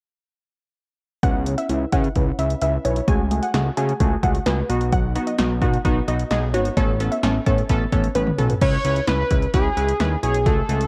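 Heard through worn, warbly cassette tape with light reverb and a drifting pitch, this driving, nocturnal synth-pop excerpt in C# minor moves at 130 BPM over a punchy analog drum machine and a fat, detuned sawtooth bass, both up front. A funky polysynth comp with chorus and a low-pass filter, a very quiet, round analog pluck playing arpeggios, and a dark, lo-fi dusty pluck with chorus and tape echo as a second line all ride a filter sweep through a C#m7, F#madd9/C#, B and Aadd9 progression. After a drum fill, a thick, bold unison lead with vibrato and tape echo takes the melody at 8.6 seconds as the harmony returns to C#m7.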